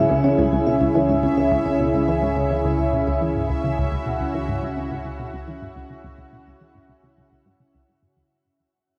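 Drenched in a huge, wet ambient reverb, this mysterious and expansive stretch of sequencer-driven space music moves at 106 BPM in C# minor, holding a single C#m chord as the whole passage fades out over 8.3 seconds. Up front, a lush, nasal unison pad sustains chords with chorus and shimmer reverb, while a juicy, squelchy blip pluck runs a low riff through chorus, phaser and tape echo. A round, deep analog bass holds C#2 as it fades away, a bubbling texture of random filter steps hovers high above, a dark, ringing vibraphone plays arpeggios until 3.6 seconds, and a filter sweep colours the synth arpeggio sound.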